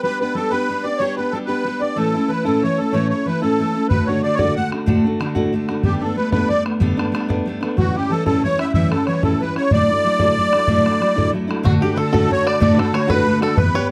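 A reedy musette accordion and a picked steel-string dreadnought guitar open this rollicking, cheerful Celtic slide together at 0.0 seconds, both placed up front in the mix. The piece moves in a straight 12/8 at 124 BPM in D major. The accordion carries the melody with a shimmering, dark and smooth tone, while the warm guitar accompaniment, complete with the odd finger squeak, rings through a progression of G, A, D, Gadd9, A7 and Dadd9 before settling on D. A damped, tight bodhran enters at 3.9 seconds, sitting a little lower and carrying a live-room feel. At 11.7 seconds a bright, twangy bluegrass banjo, played with fingerpicks, adds a percussive second line further back as the opening section begins again. Captured with close, detailed microphones and light reverb, the passage is cut from a longer piece.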